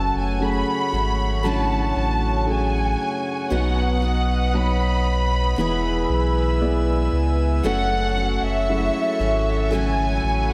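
A lush, smooth studio violin section carries the melody up front with analog delay in this emotional, melancholic pop fragment, over a concert grand piano's deep-bottomed accompaniment, an airy, breathy pad of sustained chords colored by chorus, bright picked arpeggios from a full-bodied steel-string acoustic guitar in the background, and a round, mellow sine sub bass, set in a dreamy mix soaked in wet hall reverb as the chords move from F#m through B and E back to F#m.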